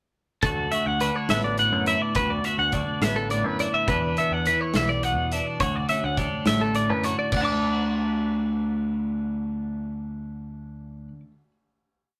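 Math rock and midwest emo in a straight 6/8 at 70 BPM, this short, intricate piece in D major (tuned to A4 = 436 Hz) moves from D69 through Em9 and Dmaj9 before settling on a held D chord at 7.3 seconds. Two clean, compressed, up-front twelve-string electric guitars share the foreground: one repeats a twangy accompaniment ostinato with spring reverb, while the other plays bright, syncopated fingerstyle arpeggios in a high register. A round, syncopated picked bass riff sits underneath, and a loose acoustic drum kit with dark cymbals, a tight kick and a pumping small-room sound carries the groove until it stops at 7.5 seconds, all captured in a rough rehearsal-room recording.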